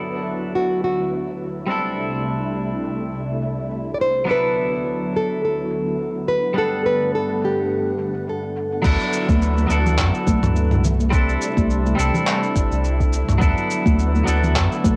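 A lightly swung 4/4 groove from a gritty, overdriven sampler-style drum kit with crash, handclaps, shaker and toms sets a blissful sunset chillout mood, while a fingerpicked nylon-string guitar carries the melody up front, finger squeak and all, over a bright, twangy clean electric guitar and silky, evolving string-machine chords. At 8.8 seconds the nylon guitar drops out as a round sine sub bass and a deep electronic kick drum enter, joined at 9.3 seconds by high-tuned congas in the background. Tape echo on both guitars, cassette saturation and a moderate spring reverb give this excerpt a dusty, homespun glow.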